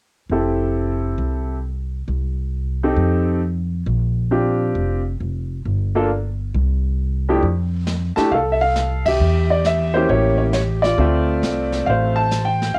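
This jazz piano trio excerpt swings at 135 BPM in 4/4 with a playful, warm mood, set in F major and tuned to A4 = 438 Hz. A clear, polished upright piano carries the melody up front from 0.3 seconds, ranging from F2 to A5 with long sustain, moving through chords such as Fmaj9, F9 and Bb69 with brief chordless passages in the harmony. Alongside it from the start, a pizzicato upright bass with steel strings sounds woody, dark and growly, sitting close in the mix between F1 and F2. A jazz brush kit joins at 7.4 seconds, quieter and set in a small room, with brushed snare, hi-hat, ride cymbal and a boomy kick, its tone colored by cassette tape. The band hits an accent together at 9.0 seconds as the harmony turns through Em and A7b9 to Dm9, all captured as a home cassette recording with light reverb.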